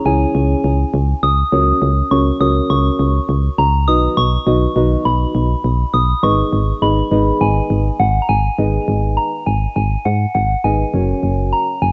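A lightly reverberant mix opens this short synth-pop excerpt, cut from a longer piece, with a driving, nocturnal mood at 102 BPM in 4/4 and G# minor, tuned slightly low to A4 = 438 Hz. Up front, a pure, gentle FM synth bell carries the melody high in its register, its decaying tones treated with chorus, phaser and delay. Beneath it, muted, felt-like synth keys play the accompaniment with an intimate, full-bodied and dark character, built from triangle, sawtooth and square waves with a noise layer, a sub octave, a filter sweep and chorus. A punchy, round FM bass anchors the low end, mellow yet sitting forward as the loudest part. The chords move from C#m through F#/C# and B to G#m, and a brief second section from 8.6 seconds closes on F#add9 at 10.9 seconds.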